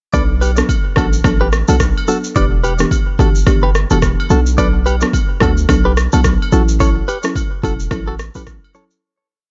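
A swung 108 BPM afrobeats groove of deep, overdriven electronic kick, syncopated rim clicks and shaker sets a smooth, sultry mood in B minor, with a punchy, heavy 808-style bass bouncing up front, a soft, dark, chorused pluck playing syncopated chords over Bm7, Em7 and F#m7, a bright, twangy clean electric guitar repeating an interlocking figure doubled in thirds with warbly pitch drift and digital delay, and quiet acoustic agogo bells tapping a timeline, all easing into a fade-out from 6.8 seconds.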